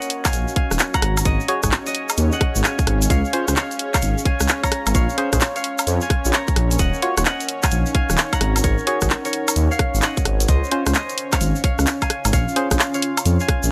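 A fingerpicked, ringing concert harp melody with dub echo opens this moody, skippy two-step UK garage excerpt at 130 BPM, over a smooth chorused analog pad with tremolo and a deep, full-bodied ambient pad pumping in the background, tape-warm layered garage drums with handclaps, hi-hat, rim click and woodblock, and a grainy tube shaker, before a tight, up-front electronic kick arrives at 0.2 s, a rumbling detuned saw bass at 0.3 s, and hollow, mellow organ stabs with chorus and dub echo at 1.5 s, all cycling through Ebm9, Ab7sus4, Dbmaj7 and Bbm9 under light reverb.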